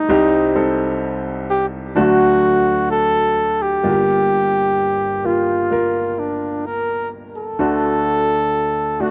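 Pop in G minor at a slow 64 BPM, this heartbroken, emotional excerpt pairs a mellow, soft-attacked flugelhorn playing a jazz-style solo melody between D4 and Bb4 with a natural-sounding baby grand piano accompanying from G1 up to D5, both up front for the full 9.1 seconds. The harmony moves from Cm to D, then settles on Gm7 at 3.8 seconds before returning to D. The sound is dry and close, like a 1970s studio recording, touched with light reverb.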